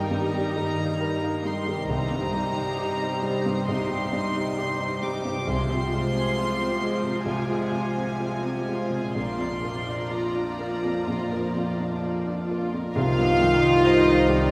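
Cinematic orchestral film score in C minor, moving and bittersweet, unfolding at a slow, rubato 65 BPM as a fragment of a longer piece. Floating, sul tasto violins carry the high melody over a second violin line, while woody, vibrato-rich violas and a soft, intimate felt-muted upright piano, its action noise audible up front, fill out the accompaniment above pure, very quiet cellos, and a bright, ringing harp plays arpeggios in the background. Dark double basses join at 1.9 seconds, and a mellow French horn section adds tight sustained chords from 13.0 seconds, the ensemble sitting in the wet reverb of a concert hall.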